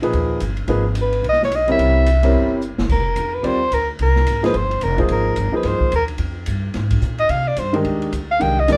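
Modal jazz with a searching, cool swing, where an up-front grand piano comps over a woody, thumpy pizzicato upright bass and a dark-cymbaled, boomy-kicked acoustic drum kit in a small live room, while a soprano saxophone enters at 1.0 seconds with vibrato and scooped notes, then after a drum fill at 2.6 seconds takes a smooth, soft-attacked solo from 2.9 seconds in this short excerpt.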